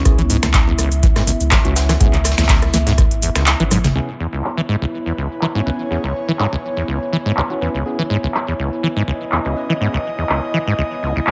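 A gritty, trippy acid house groove at 123 BPM in 4/4 with a light 16th-note swing, this excerpt sits in C# minor over a C#m7 chord. A deep, dry electronic kick and a warm, round sine sub bass drive the opening drop until the kick drops out at 3.5 seconds and a drum fill lands at 3.7 seconds. Throughout, a booming, overdriven analog drum machine sits up front with a crisp snare, metallic hats, handclaps, finger snaps, rim clicks, shaker and toms, while a polished jazz brush kit with a high-tuned snare and hi-hat adds an acoustic layer in the background for the first few seconds. The squelchy, resonant sawtooth acid bass riff pumps against the kick with analog chorus and delay, and a moody, detuned, wave-folded analog pad holds sustained chords beneath it. Hollow, organ-like percussive stabs with chorus and delay flicker in the background, and from 4.3 seconds a soft, breathy pad with a long release drifts in over the top, all wrapped in light reverb.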